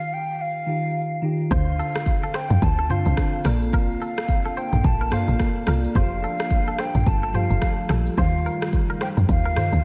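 Afrobeats at 108 BPM with a sunny, joyful swing, where a hollow, airy jazz flute with vibrato and analog delay carries the melody over a sparkling, chorused and phased FM electric piano, joined at 1.5 seconds by a woody, punchy log drum bass up front, an electronic afro-pop kit with deep kick, smooth hats, rim click, shaker and toms, and a twangy clean guitar riff, while a dark, moody pumping pad drifts in the background from 2.3 seconds, all set in a dreamy, reverb-soaked hall over chords moving from Ebadd9 through Dm7, Bbmaj7 and Fadd9.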